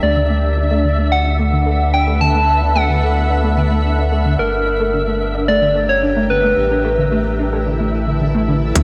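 A gentle, keys-like FM synth lead carries a wistful melody until 8.2 s over a blurred granular cloud pad that moves through a filter sweep, a warbling lo-fi pluck spinning arpeggios, a round sub bass and a faint flickering grainy texture. This intricate IDM fragment sits in a lush hall reverb with bright 1980s-style digital production. A distorted, overdriven kick and crisp hi-hats arrive only at 8.8 s, as the piece is cut off.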